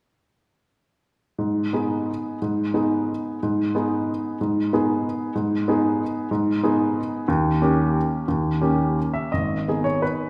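Bittersweet and wistful, this short piece cut from a longer classical piano waltz in G# minor moves in 3/4 at roughly 155-200 BPM with a flexible, rubato feel. A solo upright piano enters at 1.4 seconds and plays until 10.3 seconds, ranging from deep G#1 bass to E5, its woody, intimate tone carrying audible action noise and long sustain. The harmony rests on G# minor, turns to D#7 at 7.3 seconds and resolves home, all set in a wet recital hall reverb that places the listener further back in the room.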